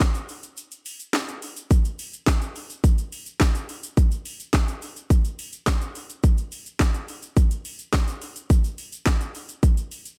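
A dry recording puts a punchy, layered electronic house drum kit up front, its kick hitting hard, the snare cracking and the hi-hats sounding metallic, with a hint of a large room from being re-recorded there. This is an upbeat, carefree pop excerpt at 106 BPM in a straight 4/4, cut from a longer piece. Alongside the kick, snare and hats, the kit carries handclaps and a shaker, all running from the start to the end at 10.2 seconds. Beneath it sits a very quiet tube shaker, grainy, bright and acoustic, with a compressed, saturated edge. A brief break between 0.6 and 1.7 seconds interrupts the groove before the beat carries on through the rest of the passage.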